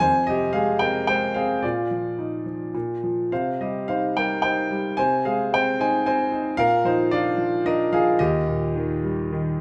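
Hopeful and warm, this short classical excerpt features a solo concert grand piano, clear and up front with deep bass and a smooth, vintage tone, playing a lyrical line in a rubato triple metre across a chord path from Fm through Cm to a closing Eb at 8.2 seconds, all set in a moderate recital hall reverb.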